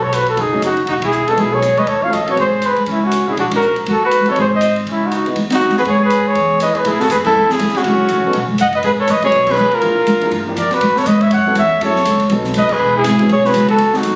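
Cool and late-night, this fragment of small-group swing and bop puts an up-front flugelhorn on the melody, with a light vibrato, soft attack and scooped notes, while a trumpet with a smooth top carries a quieter second line beneath it. Woody, thumpy pizzicato upright bass and an acoustic drum kit with dark cymbals, a high-tuned snare and a boomy kick drive the swing, and a natural-sounding grand piano comps from 0.5 s, with the band hitting accents at 1.0, 7.2 and 12.7 seconds. Captured on a phone in a club-like room, the sound is dull and muffled at the top, with a modest reverb around the group.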